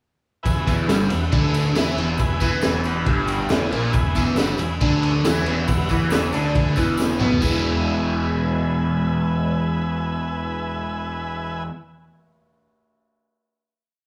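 At 0.4 s, rowdy, swaggering garage rock bursts in at 138 BPM in E: a crunchy, double-tracked guitar with phaser plays an octave riff, doubled by fuzzy, punchy picked bass, while a buzzy vintage combo organ with heavy vibrato holds triad chords in quarters above. A dark, tight breakbeat kit with a high-tuned snare drives the groove, with a jingly tambourine tucked in the background, and the organ breaks out with a fill at 2.6 s. After a drum fill, the band lands on a final chord at 7.4 s that rings on in light live-room reverb.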